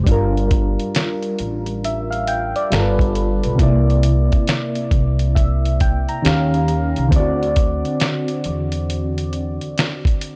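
Soft, round electric-piano-like synth keys and a woody, growly pizzicato upright bass open this melancholic, nostalgic lo-fi hip hop excerpt, the keys sitting up front with chorus, phaser, cassette tape color and a low-pass filter as they move through Gm7, G9, C9, Eb9 and D7. A muffled, compressed sampler-style drum kit with a thumpy kick, fat snare, hi-hat and finger snaps enters at 0.1 seconds, swung and up front with vintage 12-bit grit. The dry, gritty recording carries a cassette tape character, and the bass drops out at 9.6 seconds while the keys and drums carry on to the end.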